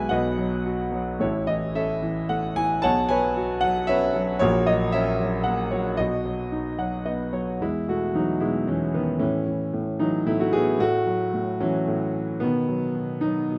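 Close, detailed microphones and light reverb frame this relaxed fragment of lyrical classical solo piano at 112 BPM in a rubato 3/4, tuned to A4 = 437 Hz, where an up-front concert grand with a warm, boxy tone, deep bass and long sustain plays alone throughout, adding a fill from 6.5 to 7.6 seconds before a new section begins at 7.6 seconds.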